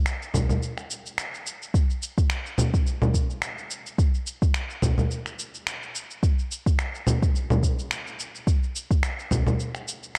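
A dark, softly reverberant production frames this short downtempo cut from a longer piece, earthy and meditative at 107 BPM in 4/4 with a gentle 16th-note swing. Sampler-style electronic finger snaps, cabasa and congas sit up front with a gritty, tape-warm character and the air of a large room, running from 0.1 to 10.2 seconds. Alongside them, a deep, layered electronic kick with overdrive sits up front and carries the low end from 0.3 to 9.4 seconds, re-recorded in a small room.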